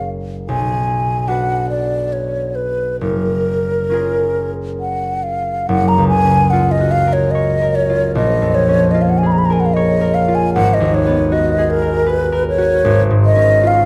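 An airy, hollow concert flute carries the melody with vibrato and tongued notes, up front over a bright, ringing fingerpicked concert harp in this dreamy, luminous impressionist classical duo, taken from a longer piece, which flows in a rubato 3/4 at roughly 65-79 BPM in F# major through lush chords like F#maj9 and G#m9, all bathed in a moderate concert hall reverb.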